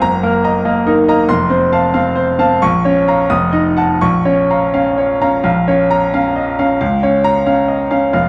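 This classical virtuoso piano study, a short cut from a longer piece, is stormy and agitated, moving in a rubato 6/8 at roughly 81-94 BPM in dotted quarters in B-flat minor. A solo baby grand sits up front with a bright, brilliant tone and long sustain, ranging from F1 up to Eb6 as the harmony circles through F7b9 back to B-flat minor. A wet recital hall reverb surrounds the playing, and the overall production leans dark.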